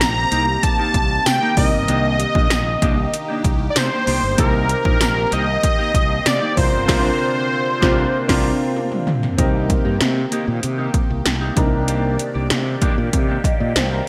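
A straight 4/4 pulse at 96 BPM drives this moody, nostalgic 1980s-style pop piece in C minor, cut from a longer track. Up-front electronic pad drums pair a punchy kick and gated snare with metallic hats, tambourine, crash and toms, with gated reverb on the snare and toms. A thick, bold sawtooth unison lead with vibrato carries the melody up front until 8.8 s, when a drum fill lands inside a band accent just before the second section opens at 9.4 s. Beneath it, a concert grand piano with analog chorus and deep bass plays the accompaniment, and a fretless electric bass with subtle chorus holds the low end. In the background, a dark, clean fingered electric guitar riff runs through lush chorus and delay, while a swirling, detuned analog pad with phaser and chorus sustains the chords. The harmony moves through Cm7, Ebmaj7 and Bbadd9, and a moderate hall reverb with digital ambience gives the bright production its sheen.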